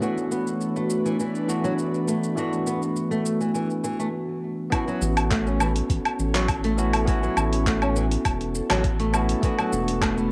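A bright, bell-like tine electric piano sits up front in this earthy, hypnotic slice of organic downtempo, playing accompaniment at 102 BPM in a straight 4/4 with sidechain pumping, analog delay and a cassette tape sheen. Beneath it, a fingerpicked flamenco guitar plays warm acoustic arpeggios through a low-pass filter and delay, while an airy, breathy pad holds detuned chords with chorus and a moving notch in the background. A layered, overdriven deep house kit of handclaps, hi-hat, shaker and woodblock, re-recorded in a small room, drives the groove until a brief stop at 4.1 s. A soft, overdriven electronic kick enters at 4.7 s as the harmony moves from E9sus4 to A6, and a round, deep analog bass with a dark, fast-attack tone arrives at 5.0 s with sidechain pumping. Moderate spring reverb and a homespun cassette character wrap the whole excerpt as it returns to E9sus4 before it cuts off.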